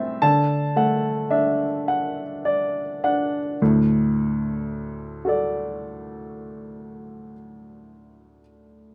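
A D major chord on a solo baby grand piano opens this brief fragment of neoclassical minimalist music, unhurried at 36 BPM in a rubato 6/8 and easing into a slowdown over its first 3.6 seconds before a new passage begins. The piano sounds warm and open with a short sustain, sitting up front in a light reverb as it spans from low D2 to high A6. The mood is intimate and hopeful.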